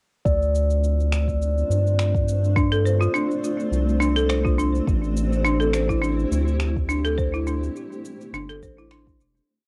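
Organic downtempo in D minor at 104 BPM, mystical and meditative, with a lightly swung groove of soft, deep electronic kick and an organic layered beat of electronic cabasa and finger snaps, all tinted by cassette tape, under a round, up-front analog bass that holds long gliding notes with sidechain pumping. A blurred, detuned granular cloud pad breathes with the same pumping and plate reverb as it sustains Dm7 and then Am7, while a pure quartz singing bowl, struck with a wooden striker and close-miked, holds a ringing high note with slow beating. From 2.6 seconds a rustic, woody marimba played with hard mallets loops a 10-step arpeggio that drifts against the bar through analog delay and plate reverb, before the whole home cassette recording fades out from 6.4 seconds.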